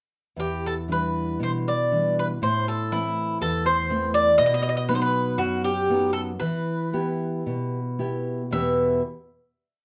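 At 0.4 s an Irish bouzouki and a nylon-string guitar begin together in this short, mournful fado-style ballad in E minor, moving with a slow, rubato feel at around 56-62 BPM in 2/4. The picked bouzouki carries a motif-based melody of call phrases with a metallic, double-string ring, while the small-sounding, fingerpicked guitar supplies bass notes and oompah chord figures through Em7, Am and B back to Em. Both instruments sit up front within a wet studio reverb heard from further back in the room, and the longing piece settles on a final chord from 8.5 s, with both parts stopping at 9.0 s.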